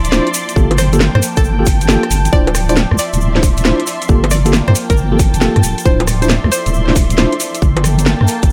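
A deep, dark wobble bass sits up front in this soulful, bouncy two-step garage excerpt, its compressed, sustained tone thickened by chorus and tube saturation and pumping against the sidechain. The tight electronic kick arrives at 0.6 seconds, driving a 136 BPM groove in 4/4 with a heavy 16th-note swing, while the garage kit adds a cracking snare, rim clicks, bongos and warm hats, and a grainy tube shaker rattles in the background. Mellow, clean electric piano stabs with tape echo trace the Gm9 and Dm9 changes until 7.3 seconds, and from 0.8 seconds a twangy, bright resonator pluck carries a short melody through chorus and delay. Underneath, a veiled, muted string section bows softly with light vibrato and also pumps with the sidechain, and a very quiet, ethereal pad holds slow, airy chords. A generous digital ambience surrounds the whole mix, giving the tight, produced beat a dreamy, late-night glow.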